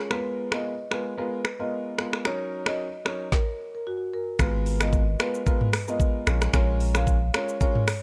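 A lightly swung sixteenth-note groove at 112 BPM in 4/4 drives this smooth, hypnotic afrobeats passage in G# dorian, cut from a longer piece. The electronic, produced drum kit sits up front with a knocking kick and a woody snare, while smooth hi-hats, finger snaps, rim clicks, shaker and toms fill out the kit. A worn, intimate grand piano with audible action noise and a boxy, filtered tone supplies the G#m69 and D#m7 chords underneath. Above it, a close-miked marimba played with medium mallets carries the melody in a full, dry voice, touched by slapback echo and a low-pass filter. At 4.4 seconds a deep, punchy sine sub bass enters up front with a pitch-drop attack and sustained notes as the harmony moves from G#m69 to A#m7, and it stops at 7.3 seconds. The recording carries little reverb.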